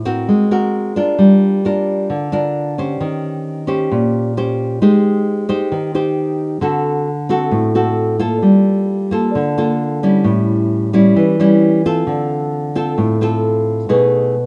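A straight 4/4 pulse at 132 BPM carries this bossa nova passage in G minor, cut from a longer piece. A single nylon-string guitar plays alone from 0.0 to 14.5 seconds, fingerpicked in a classical manner and ranging from A2 up to C5. Its tone is dark and full-bodied, sitting up front in a light reverb. The harmony moves through rich colors, opening on Ab9 before settling onto Gm7, then passing through Eb6, Abmaj7 and D7 to Gm9. Later it turns through A7 and Dm7 before landing on B6 near the close. The mood is smooth and melancholic, a lone voice of wistful elegance.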